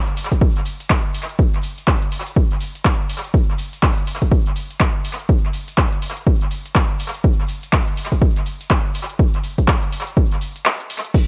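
A punchy, overdriven electronic kick sits up front in this moody house fragment with a swung sixteenth-note feel, cut from a longer piece, and drops out briefly from 10.7 to 11.1 seconds. A layered deep house kit of crash cymbal, handclaps and hi-hat also sits up front with a saturated, tape-echoed edge, while a grainy, bright egg shaker sits distant in the background. The mix has an echo-heavy, cassette-tape character.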